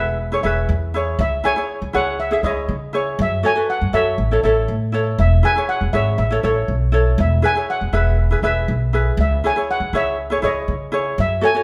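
Bouncy and carefree, this short calypso excerpt moves at 120 BPM in a straight 4/4, with a mellow, shimmering steel pan carrying the melody over a light, fingerpicked ukulele and a thumpy, woody pizzicato upright bass sitting up front. The harmony circles through E, C#madd9, F#m and A, and the trio sounds like a band playing live together in one large studio, bathed in a generous reverb.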